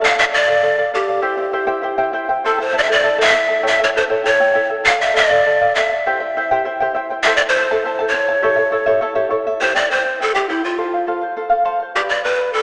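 Andean folk in A minor at a moderate 101 BPM in a straight 2/4, this short cut from a longer piece carries a melancholic, wistful mood. Large cane pan pipes lead the melody, their breathy, warm, straight tone marked by a crisp attack, an audible chiff and an unsteady quality. Beneath them a fingerpicked charango supplies the accompaniment, its double strings, some doubled at the octave, giving a shimmering acoustic sparkle. Both instruments sit up front and play throughout, the pipes a touch louder than the charango, while the harmony circles through D minor, C, A minor and A7 before turning to C, F and G at 9.6 seconds. A wet concert hall reverb surrounds the pair, yet the overall sound has the character of a small speaker.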